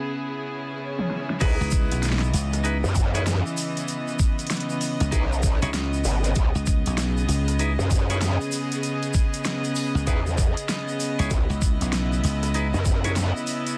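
A dense, heavily limited modern mix sits under light reverb and a layer of vinyl crackle in this funky, playful glitch hop cut, taken from a longer piece and moving at 97 BPM in 4/4 with a swung sixteenth feel in C# minor. It opens on a rich, earthy chamber string section bowing distant sustained C#m7 chords with light vibrato, pumped by sidechain, while an electronic swell sits in the background and an overdriven pop drum kit plays a short fill, its fat snare, warm hats, toms and crash dulled by low-pass filtering. The drop lands at 1.4 seconds on C#m9, bringing in a knocking, overdriven electronic kick up front and a growling, aggressive bass that wobbles through a formant filter with saturation, chorus and a bright edge. A dry, punchy thumbed slap bass, foam-muted and direct, joins at 1.6 seconds, adding to the low end beside the growl. Above them a dark, clean picked electric guitar plays stabs with subtle chorus, delay and sidechain pumping, while a grainy, compressed tube shaker adds texture through to the close at 13.8 seconds.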